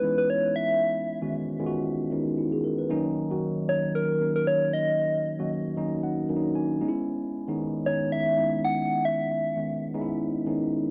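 Late-night and deep, this short amapiano passage, cut from a longer piece, settles into a gently swung sixteenth-note feel. A mellow tine electric piano carries the accompaniment from the start, its clean tone colored by a phaser and heard as if through built-in speakers, and it slips in a brief fill between 5.5 and 7.1 seconds. Alongside it, a soft struck synth lead sings the melody in a bright, round, keys-like FM voice with a fast attack and decaying notes, colored by chorus and tape echo before it drops out at 10.1 seconds. Both parts sit up front over a harmony that moves from Dbm7 to Ebm7 and back to Dbm7. Light digital reverb adds a touch of space, while the dry, gritty hardware sound gives the whole recording a raw edge.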